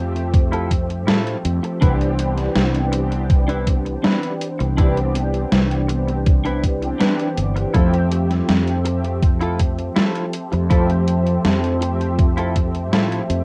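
A thumpy, tape-softened electronic kick sits up front in this dreamy, faded vaporwave excerpt at 81 BPM. Alongside it play an overdriven 80s drum machine whose hi-hat and snare carry gated reverb, and a round, punchy fretless bass. Mellow, detuned synth brass with ensemble chorus and tape echo holds the Fmaj7 and Cmaj9 harmony, while a twangy, clean guitar riff rings through analog chorus and echo. From 9.1 s a warbling, 12-bit-gritty pad drifts in behind everything, all under a rough cassette-demo sheen.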